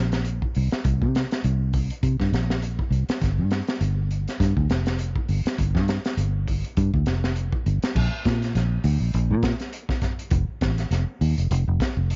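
A dry, close-up recording with a rolled-off top end carries this short funky, hypnotic afrobeat cut, moving at 101 BPM in 4/4 with a 16th-note swing. A round, foam-muted fingered electric bass sits up front from the start, ranging from F1 to C3, while a gritty, saturated breakbeat kit with a punchy kick, high-tuned snare, dark cymbals, hi-hat and crash joins at 0.1 seconds. The groove shifts into a second section at 8.0 seconds and runs to the cut at 12.2 seconds.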